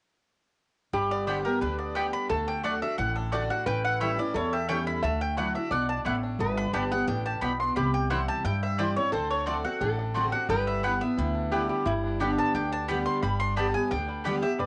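A mandolin leads up front with a picked, double-string melody, joined by a second mandolin playing stabs from 1.3 seconds, in this lively, driving bluegrass cut from a longer piece, moving at 176 BPM in G major. A twangy banjo melody sits in the background beside a nasal, metallic lap resonator guitar line played with slide, while a jumbo steel-string acoustic guitar with fresh strings and audible finger squeak picks a full-bodied accompaniment over a growly, thumpy upright bass. It has the feel of a home cassette recording in a moderate booth, with every part except the bass carrying tape character and a dulled top end.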